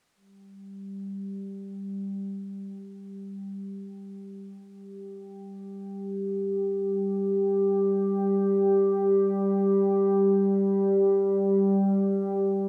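Serene and weightless, this ambient fragment in free time features a lone analog drone, evolving, sawtooth-edged and mellow, sitting up front with chorus and tape echo as it sustains between G3 and G4 from 0.4 to 12.7 seconds, slow to bloom and long to fade inside a vast cathedral reverb.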